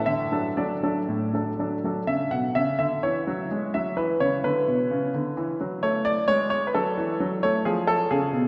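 Elegant and graceful, this short passage from a classical-period piano sonatina moves in 4/4 at a flexible tempo between 118 and 133 BPM, shaped by rubato. A clear grand piano plays alone throughout, sitting present and up front while ranging from A2 to F#5. The harmony opens on D, then turns at 2.1 seconds to E7sus2/B as a new section begins, passing through E5, C#m7 and F#m before reaching C#7/E# at 7.7 seconds. The piano rings into a wet cathedral reverb with a long 4.7-second decay, and the church or concert hall recording gives every phrase a lingering halo. Cut from a longer piece, it lasts 8.5 seconds.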